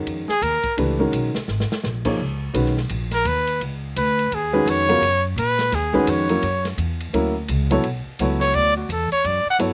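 Modal jazz with a spiritual, hypnotic swing, this passage, cut from a longer piece, sets a breathy, close-miked trumpet solo with clear tone and vibrato up front, sounding a brief phrase at 0.3 seconds before returning at 3.1 seconds to carry the line over suspended thirteenth harmonies that move to F#7 and then Bm9. A boxy, short-sustain upright piano comps alongside a woody pizzicato upright bass with steel strings, both sitting close in the mix. The swinging big-band drum kit, heard in a big room with a punchy kick and a medium-tuned snare, sits further back and slips in a quick fill at 1.5 seconds, while the overall sound stays dry and open-air.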